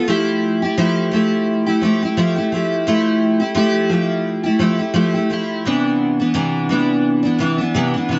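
A picked steel-string acoustic guitar carries this short indie pop excerpt on its own from 0.0 to 8.2 seconds, its full-bodied dreadnought tone sitting up front between C3 and G4. An analog chorus and a vibrato effect give the guitar a shimmering quality. The mood is sunny and dreamy, moving at 86 BPM in 4/4 with a light swing on the sixteenths, in F lydian with tuning set to A4 = 437 Hz. The harmony rests on Fmaj9 before shifting to Cmaj9 at 5.7 seconds. A moderate spring reverb with a long tail surrounds the guitar, and the rounded, softened top end keeps the sound mellow.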